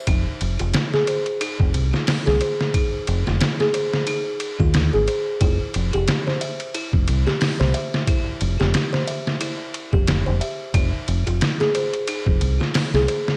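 A swung 4/4 groove at 90 BPM, with a 57% lilt on the sixteenths, drives this smoky, hypnotic trip hop piece in F minor, cut from a longer track. Up front, a pitched-down, sampler-style drum kit lays down a thumpy kick, medium-tuned snare, hi-hat and ride, compressed and gritty, as if re-recorded in a large room. Beneath it, a deep dub fingered electric bass sits between F1 and Eb2, dark, round and punchy, direct and amped with transformer saturation. Above, a delicate music box plays tinkling, plucked arpeggios from Eb4 to E5, bright and close-miked with a full small-box tone, run through a vintage 12-bit sampler, cassette tape and tape echo. The harmony moves from Fm7 to C/F at 5.4 seconds and on to F7(no3) at 10.7 seconds, set in light reverb with the character of a home recording on cassette.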